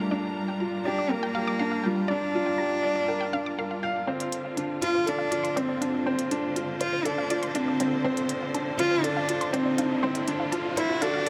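Piano and strings electronica with an intimate, moving feel, where a close, sul tasto cello carries the melody over focused, vibrato-rich sustained string chords and a woody upright piano riff with delay, while a very quiet, bright, detuned sawtooth pluck spins arpeggios, both piano and pluck passing through filter sweeps until a build-up begins at 4.1 seconds, clicky electronic hi-hats enter at 4.2 seconds and a background riser joins at 5.4 seconds, all in light reverb and studio ambience.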